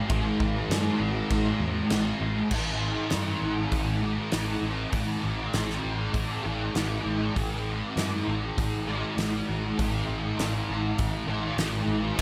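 The recording sits in a light studio reverb, with a thick fuzz guitar placed up front and the drums carrying a pumping room sound. This blissful, hazy piece of shoegaze and dream pop rock moves at 99 BPM in a straight 4/4, tuned to A4 = 436 Hz and opening on an A5 chord. The double-tracked electric guitar plays a picked, distorted riff between A2 and A3, thickened by ensemble chorus. A round, foam-muted fingered bass with an amped tone joins at 0.1 seconds in the low register. The loose acoustic drum kit enters at the same moment with a punchy kick, fat snare, hi-hat and dark crash cymbal, and all three parts carry on until the excerpt is cut at 12.2 seconds.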